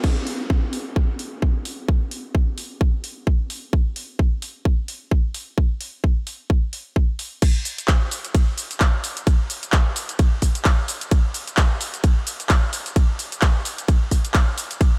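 Aggressive and bouncy, this house excerpt at 130 BPM swings its sixteenths as a tight, up-front electronic kick drives beneath an overdriven drum kit of crash, ride, hi-hat, shaker and handclaps captured in a large room, with a drop arriving at 7.4 seconds under light reverb.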